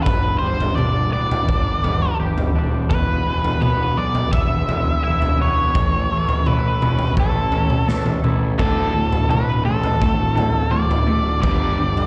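An up-front octave-fuzz lead guitar carries a dark, brooding melody over a gritty, boomy garage drum kit, growly fuzz bass and a twangy, chorused clean guitar in the background, with a tight distorted guitar riff entering at 8.6 seconds in this 84 BPM quiet-loud alternative rock passage moving through G, E, A and Dm, heard as a live gig through the venue's PA in a reverberant hall.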